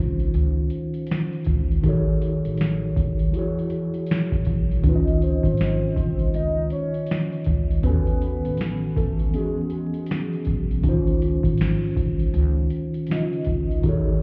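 Heard muffled as if through a wall, with club reverb and vinyl crackle, this dreamy, cosy lo-fi hip hop excerpt at 80 BPM in Db major swings gently as a mellow tine electric piano with cassette-tape colour plays chords up front, a woody, thumpy pizzicato upright bass sits in the background, a booming analog drum machine with a deep kick, crisp snare and metallic hats drives it, and a warbly, nostalgic detuned lead with chorus, vibrato and tape echo sings the melody from 5.2 to 10.1 seconds.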